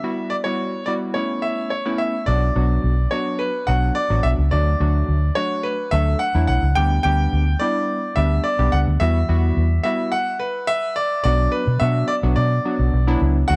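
A bright grand piano carries the melody up front in this euphoric, summery dance-pop excerpt at 107 BPM, over chorused, detuned analog keys and a dark, foam-muted electric bass that enters at 2.3 seconds, with a stop from 10.1 to 11.3 seconds before the group returns on Bm in light reverb.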